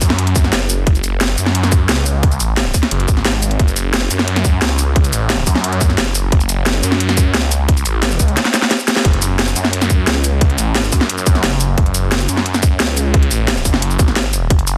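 A phased, detuned saw bass swirls thick and saturated from F#1 to F#2 beneath a tight, overdriven electronic kick and a layered kit of cracking snare, bright hats and shaker, all pushed up front in this mechanical, dark technical drum and bass cut at 176 BPM in F# minor, where a drum fill at 8.4 seconds leads into a band accent at 9.0 seconds that relaunches the drop within a dense, heavily limited mix touched by light reverb.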